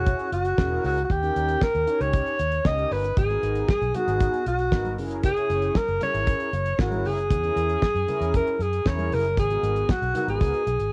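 A breathy, whispered alto saxophone carries the melody from the first moment of this danceable early-eighties boogie funk. Beneath it sit round, chorused synth brass and a dark, foam-muted fingered bass, and a damped seventies drum kit joins at 0.1 s. The saxophone sounds up front yet distant and intimate, with light vibrato and jazz-style phrasing, and it shares a cassette-tape tint with the drums, whose fat snare and tight kick have a rolled-off top. Very quiet, ringing congas played with soft hands come in at 3.2 s, and the homemade cassette recording has a light small-room reverb.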